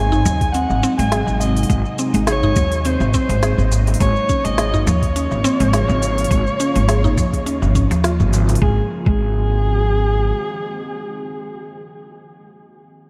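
A thumpy pizzicato upright bass sits up front in this earthy, peaceful organic downtempo excerpt, moving at 104 BPM in 4/4 with a light sixteenth-note swing in Ab mixolydian. Above it, a single distant, bowed kamancheh carries the melody with vibrato and portamento, its dark tone trailed by tape echo. A round, mallet-like synth pluck spins chorused, echoing arpeggios until about 9.2 seconds, while an ethereal pad holds sustained chords in the background, colored by ensemble chorus, phaser and sidechain pumping. The groove comes from a soft, tape-warm electronic kick, a produced kit with a woody snare, crisp hats and shaker, and a very quiet darbuka played with soft hands, all joined by a faint, breathy wind-like tone. The harmony moves from Ab7 to Bbm over Ab and back to Ab7 at 8.6 seconds, and a long cathedral reverb soaks the whole mix in a dreamy haze.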